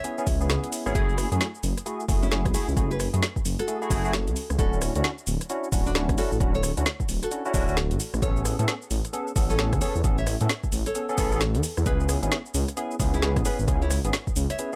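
A nylon-string guitar, bright and fingerpicked, opens the track alongside barky electric piano stabs and a garage drum kit, setting up a bouncy, skippy two-step garage groove at 132 BPM in F# minor with a swung 16th-note feel. The drum kit pairs a woody snare and metallic hats with rim clicks and a shaker, all given an overdriven edge and a touch of studio ambience. At 0.3 seconds a dark, detuned saw bass arrives, deep and rumbling with a beating, saturated tone that sits up front, joined by a punchy, tape-warm electronic kick. The electric piano's clean tine stabs carry an ensemble chorus and dub echo, while the guitar carries its classical melody. Chords move from C#m7 through F#m9, Dmaj9 and Amaj9 before returning to C#m7 near 11.9 seconds, in a dry, close-sounding mix cut from a longer piece.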